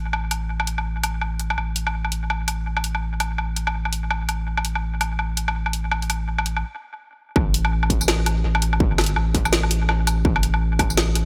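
A deep, thick sine sub bass sits up front in this half-time drum and bass passage, cut from a longer piece, its fast attack and sustained notes coloured by tube saturation. The layered electronic kit runs alongside it, pairing a woody snare with bright hi-hats, tambourine and woodblock; it was re-recorded in a small room, sits up front and is fed through analog delay. At 166 BPM in 4/4, with a 60% swing on the sixteenths, the groove feels spacious and cinematic, and the light reverb and echo-heavy mix add to that sense of space. A stop from 6.6 to 7.4 seconds clears the way for the drop, where a distorted, tape-warm electronic kick enters at 7.4 seconds and plays until shortly before the end. Tuned to A4 = 441 Hz, the bass and kit carry on together until the passage ends.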